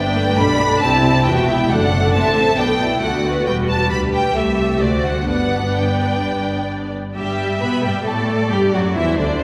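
A quick 4/4 pulse at 135 BPM moves with a rubato give and take through this spirited, cheerful classical-period movement for string orchestra in G major, cut from a longer piece. The first violins carry the melody, sounding clear and intense with vibrato, sitting up front despite a distant quality. Beneath them, the second violins trace a focused, rich second line. The violas fill in the accompaniment with a smooth, even tone. Cellos add an expressive, soft-attacked bass with vibrato, while the double basses anchor the low end with a light vibrato. All five sections play from start to finish over a wet concert hall reverb, moving from G through C, F#m7b5, Bm, Em, Am/C and D back to G before a new section begins at 7.2 seconds.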